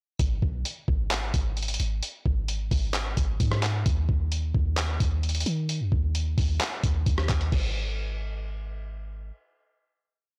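A deep, boomy 808-style bass features in this short, dark and melancholic trap piece, its clean sine tone landing with a fast attack and decaying into long sub-bass notes that follow the kick and bend with pitch slides. In G# minor at 131 BPM with a half-time feel, the bass sits up front beside an equally up-front lo-fi sampler-style drum kit that sounds compressed, muffled and tape-warm, as if re-recorded in a large room. That kit delivers a half-time trap beat built from a thumpy kick, handclaps, rim clicks, a crash cymbal and fast hi-hat rolls. The overall recording is blown-out and overdriven, with little reverb, which gives the hook a gritty character. The drums drop away at 7.6 seconds, leaving the bass to carry the final note alone until it ends at 9.3 seconds.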